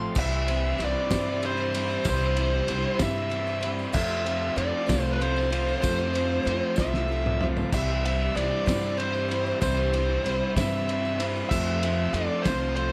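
Rolling along in a straight 6/8 at 64 BPM counted in dotted quarters, this folk rock and heartland rock passage in C major has a hopeful, open-road feel, moving between C and F chords in a short cut from a longer piece. A growly, woody upright bass sits up front under a crunchy, double-tracked overdriven guitar riff, while a jumbo plugged-in steel-string acoustic guitar picks a full-bodied accompaniment in the background. A reedy tonewheel organ with key click and a slow rotary speaker holds very quiet sustained chords high above. From 0.2 seconds a bluesy, distorted lead guitar carries the melody up front in a tight range, joined by a cloth-damped, thuddy drum kit with a fat snare, tight kick and dark, muffled cymbals, its gritty lo-fi small-room sound rolled off at the top, plus a jingly tambourine tucked in the background. The drums play a fill from 6.8 to 7.7 seconds as the harmony returns to C, and light reverb gives the whole band a little space.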